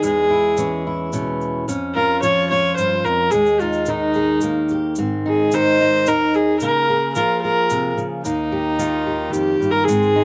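A reedy, gut-string viola bowed in period style takes the solo throughout this peaceful, gentle acoustic folk passage in 3/4 at 110 BPM, sitting up front over a warm fingerpicked steel-string guitar moving through chords such as Bbm6/F, Ebsus4, Ab and Db6, while a grainy, bright egg shaker stays close and dry, all set in a small room with a moderate reverb and detailed close miking.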